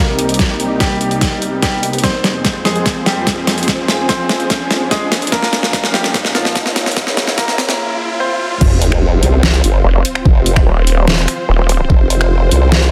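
Two up-front wobble basses drive the drop of this menacing, heavy half-time dubstep at 146 BPM in F minor: a detuned, sawtooth-edged bass with a formant sweep lands at 8.6 seconds, and a nasal, resonant vowel-sweep bass joins it at 9.8 seconds, both chorused and overdriven. Before that, a brilliant, polished grand piano with digital delay carries the melody through the build-up over Cm, Fm and Bbm chords. Beneath it sit a lush, sidechain-pumped supersaw pad, a deep, warbling ambient pad with chorus and reverb, a background riser and sub drop, and a drum fill on an overdriven, layered kit with a deep snare and bright hats, while a knocking electronic kick anchors the dense, heavily limited mix.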